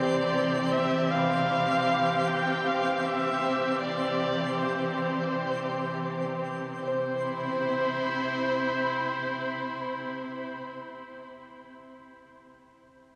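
Drenched in a huge ambient reverb with a 7.6 s decay, plus a small-room ambience, this dreamy ambient fragment feels luminous and peaceful, drifting at 78 BPM in a straight 4/4 in C major. Up front, a dark electric violin carries the melody with a woody, smooth-topped tone, singing with vibrato and portamento through tape echo. A muted studio string section, bowed con sordino and veiled in soft attack, holds sustained chords close beside it, moving from Cmaj9 to Cmaj7 at 6.9 seconds, where the twinkling granular texture also drops out after sparkling in the background with a bright octave-up shimmer, its own built-in reverb and subtle chorus. Very quietly underneath, a soft FM synth bell spins pure, mellow arpeggios with fast, decaying notes colored by chorus and phaser. The violin and strings both stop at 10.7 seconds, leaving the gentle bell alone until 12.5 seconds.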